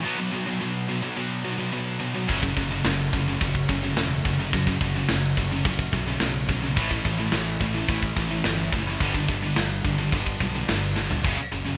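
Heavy metal in F# phrygian at 107 BPM, this dark, aggressive fragment of a longer piece opens with three distorted electric guitars playing a riff together from the first second. One is double-tracked and high-gain, another is scooped and high-gain, and the third is tight, all picked and sitting in the background of the mix. At 2.3 seconds a growly, punchy picked electric bass enters with a direct tone, alongside an up-front acoustic drum kit with bright cymbals, a medium-tuned snare, a tight kick, crash and toms heard in a big room. The harmony moves through Bm, F#m, A and G before landing on an F#5 power chord at 11.2 seconds, just after a drum fill at 11.0 seconds. The whole thing has the rough, small-room feel of a home demo.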